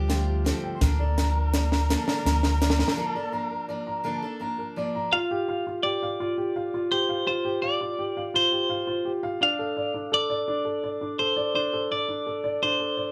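A moderate studio room holds this live-band snippet of wistful, yearning indie folk in a slow 6/8 at 56 BPM, where a dry cocktail kit with a high-tuned snare and punchy kick plays a fill alongside a round, amped fingered bass, a fingerpicked steel-string acoustic guitar sitting in the background and a bright picked acoustic guitar, while a nasal, boxy erhu bows a second line with vibrato and portamento and a mellow, woody upright piano keeps its long-sustained arpeggios going until 13.1 s, then after a break a compressed, clean electric guitar takes the melody with tremolo from 5.1 s.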